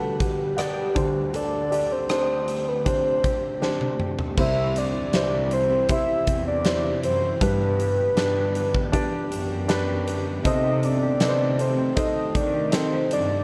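A tender, heartfelt pop ballad at 79 BPM, where a round, mellow octave-layered synth lead with chorus carries the melody over polished grand piano, a background fingerpicked steel-string guitar with delay, an ethereal pad and a huge arena drum kit with punchy kick and fat snare, with a drum fill at 3.6 seconds leading to a dark, reedy bowed cello section entering on bass at 4.4 seconds, all in a small room ambience, in what is cut from a longer piece.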